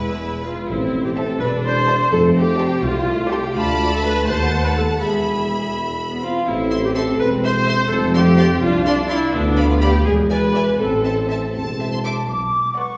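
Heard in a reverberant recital hall, this excerpt from a longer piece is a sneaky, mischievous film cue in A minor, moving at 83 BPM in a straight 6/8 and sliding through shadowy diminished chords before landing on Bm. A clear, intense violin section carries the melody with vibrato, while a second violin section adds a smooth background line, a focused viola section sits up front with the accompaniment, and bowed cellos and a lush double bass section anchor the bass. A mellow solo tuba joins the low end from 0.7 to 12.2 seconds, and an airy, tongued flute group steps forward with a second line at 11.5 seconds.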